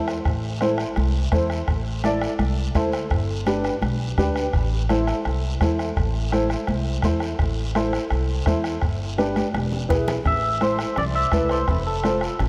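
A dark, mellow upright piano with analog chorus and a thumpy, woody upright bass sit up front from the start of this fiery, passionate cumbia, joined by a soft-beater bombo, a raspy guiro and ringing congas, the congas set back in the mix, all moving through A minor, G and E chords. After a drum fill at 9.4 seconds, a clean, twangy electric guitar steps forward at 10.3 seconds for a short delayed solo over A minor and F. A lush hall reverb soaks the whole mix in a dreamy haze before this cut from a longer piece ends.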